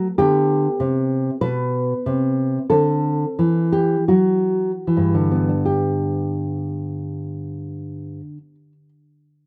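A dark, full-bodied solo nylon-string guitar, thumb-plucked and up front, plays a flowing, radiant baroque-style classical dance in G major at a rubato 37-51 BPM in 4/4. It ranges from G2 to B4 and moves from G through D7 while slowing over the opening 5.6 seconds, then settles back on G for a brief second section ending at 9.5 seconds, all captured as a dry, close 1970s-style studio recording with a touch of small-room reverb, tuned to A4 = 445 Hz, in a passage cut from a longer piece.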